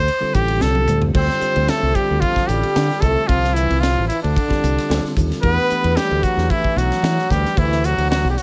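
Light reverb and a touch of studio ambience frame this short cut from a longer electric jazz fusion piece in D minor, moving at 112 BPM in a straight 4/4 with a nocturnal, intense mood. A clear, up-front trumpet carries the melody from the first moment, its soft attack, scooped notes and smooth top giving the jazz-style line a polished glow. It takes a solo until 1.1 seconds, while a tight funk drum kit with a high-tuned snare, tight kick, hi-hat, ride, crash and toms plays a fill from 0.6 seconds. A growly, direct fingered electric bass anchors the low end throughout, and a clean, bell-like tine electric piano sits in the background as accompaniment. At 1.2 seconds a bright, vintage trombone joins with a jazz-style second line beneath the trumpet. The harmony rests on Dm7 before shifting to Em9 at 5.4 seconds.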